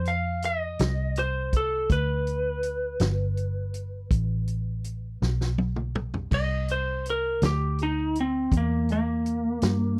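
Gritty and laid-back, this slow blues in 12/8 moves at 54 BPM with a straight feel, cut from a longer piece and captured in a dry, close 1970s-style studio sound with little reverb. A lightly driven lead guitar carries the melody within a range of Bb3 to F5, its tone bright, twangy and slightly broken-up, picked and compressed up front. Underneath, a vintage muted fingered electric bass sits between G1 and G2, dark, round and punchy with a foam-muted, amped character. The vintage acoustic drum kit has a natural studio-room sound, with dark cymbals, a fat snare and a tight kick, and it plays a fill from 5.2 to 6.3 seconds. The harmony moves from F5 to Gadd9 before shifting to C9 at 6.3 seconds, where the guitar takes off into a solo that runs to the end.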